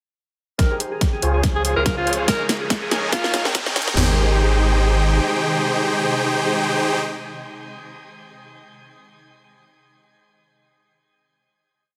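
Huge, detuned supersaw chords stab up front through a filter sweep and digital delay, pumping against a thick, saturated sub bass in this bright, lush future bass piece at 142 BPM in half-time, in Ab major. A clear alto saxophone with vibrato plays short solo phrases while a mellow concert harp rings out an eight-step arpeggio in the background and an ethereal, shimmering pad with phaser and chorus slowly fades in from 1.2 seconds. An overdriven trap kit with a hard-clipped kick and a layered dubstep kit with hat rolls drive a build from 0.6 seconds, joined by a very quiet riser, before the build resolves at 4.0 seconds into a sustained final Abmaj7 chord under a dense, heavily limited master.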